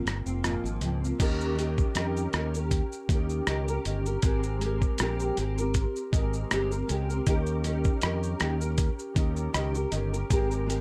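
A light reverb softens this short, hazy slice of indie and bedroom pop, cut from a longer piece, with the guitar, bass and drums all sitting up front. At 79 BPM in 4/4 with a gentle swing on the sixteenths, the mood is nostalgic and unhurried. A fingerpicked steel-string dreadnought acoustic guitar carries the accompaniment with a full-bodied tone, coloured by an ensemble chorus and a warbly pitch drift. A fingered electric bass sits low and direct, dark, round and punchy. From 0.1 s a dusty, sampler-style drum kit joins, compressed and gritty, re-recorded in a small room, with a thumpy kick, rim click, hi-hat, shaker and crash cymbal. The harmony moves from Ab69 to Eb7 at 1.2 s, then sways between Abmaj9 and Eb7 before settling back on Abmaj9 at 10.3 s.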